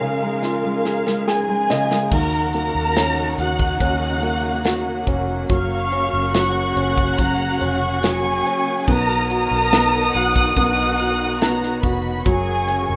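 A straight 4/4 pulse at 71 BPM carries this tender, hopeful pop ballad excerpt in F# major (A4 = 436 Hz). A lush, distant violin section sings the melody over polished baby grand piano and smooth-topped sustained string chords, while a punchy, up-front drum kit and the piano both add fills during the opening break. At 2.1 s a floating, sul tasto second violin line and a dark, round, foam-muted electric bass join, in the wet small-room ambience of a rough home demo.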